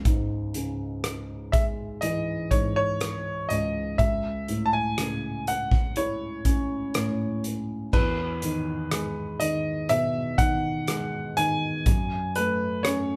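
A brilliant grand piano carries the melody from 1.5 seconds over a soft, felt-muted upright piano with audible action noise and a loose indie drum kit with dark cymbals and a boomy kick, giving this heartbroken, melancholic 61 BPM pop ballad fragment the intimate feel of a band playing live in one room with light reverb, its chords moving from C#m to F#m.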